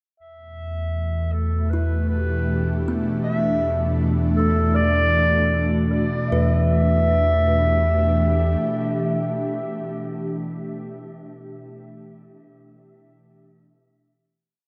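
A mellow, distant clarinet leads this short, reflective ambient piece, fading in from 0.2 seconds with arching, motif-based phrases in E minor, touched with tape echo. From about 1.0 seconds an ethereal, airy pad sits up front, its detuned sawtooth tones softened by ensemble chorus and slow-attack, long-release chords that shift slowly beneath the melody. A deep, round sine sub bass holds a sustained E root, while a woody, hollow kalimba rings quietly in the background with tape-echoed arpeggios, its two slow loops of unequal length drifting against each other. The harmony moves from Em to Dadd9/E and settles back on Em for a final chord from 6.3 seconds, all at an unhurried 79 BPM. A cathedral-like reverb with a long 5.5-second tail bathes the recording in a melancholic, spacious glow.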